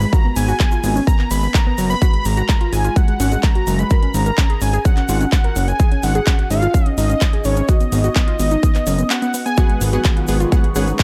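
Dark, warm and nearly dry, this bittersweet, emotional progressive house excerpt pairs a thick, bold unison lead and soft, round pumping pluck arpeggios with dub echo over a saturated analog bass, a punchy up-front kick, metallic hats, handclaps and a grainy shaker, before a lush chorus-and-phaser pad, filtered supersaw stabs at 9.6 seconds and a reversed, dreamy swelling texture at 10.4 seconds arrive.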